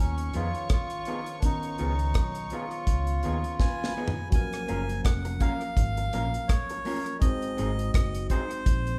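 Sweet and smooth, this lovers rock reggae excerpt moves at 83 BPM with a swung 4/4 feel, as a reedy, breathy melodica carries the melody over a barky tine electric piano with overdrive and phaser, a round, foam-muted fingered bass and a dry, up-front drum kit with a tight kick and rim clicks. A floating bowed string section adds a soft second line until 4.3 s, where the harmony settles into Gb lydian after a drum fill, while a slightly broken-up, lo-fi electric guitar through a small old amp supplies dark stabs. The band sounds as if playing live in one large studio room with moderate reverb.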